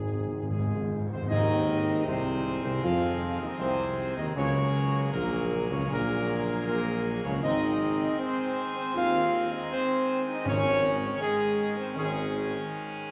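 Solemn and triumphant, this classical brass-and-organ passage, cut from a longer piece, moves at a stately 79 BPM in 4/4 in Ab major. It opens with a timpani fill on medium mallets, and a mellow trumpet section, up front with a soft attack and light vibrato, carries the melody above sustained chords from a clear trombone section set in the background and a dark, distant French horn section. A warm tuba anchors the bass with a smooth top. At 1.3 seconds a full pipe organ enters with sustained chords, its mixtures lending a majestic, brilliant, romantic voicing, and the timpani returns briefly at 10.5 seconds. The harmony moves from Ab through Gbadd9 and back to Ab before settling on Dbsus2 over an Ab bass, all bathed in a church reverb that lingers for about 2.6 seconds.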